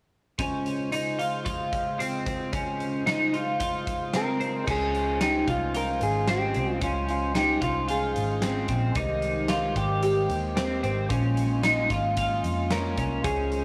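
A straight 4/4 pulse from a huge arena drum kit, with its punchy kick, fat snare and bright cymbals, carries this dreamy, ethereal dream pop excerpt, where a twangy twelve-string electric guitar plays up-front arpeggios through analog chorus and delay over a hollow chamber organ's sustained flute-stop chords with tremulant, a clean, fingered electric guitar melody with analog delay enters at 4.2 seconds and returns at 12.7 seconds, and a dark, round, foam-muted bass joins at 4.7 seconds, the whole set in light reverb and small room ambience.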